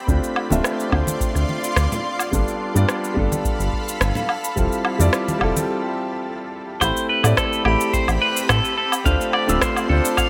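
Smooth and warm, this short sunset chillout excerpt in A minor moves at 107 BPM in a straight 4/4, with a shimmering, ethereal pad holding sustained chords over a dark, mellow grand piano treated with digital delay and shimmer reverb, while a round, deep analog bass sits up front beneath an electronic kick, a layered kit of cabasa, woodblock and rim click, and saturated, low-tuned congas that play until 5.7 s. After a brief break ending at 6.8 s, a clean, twangy electric guitar enters with picked arpeggios through delay and shimmer reverb as the chords move from Am9 back to Dm7. A moderate plate reverb and bright 1980s-style digital production shape the mix.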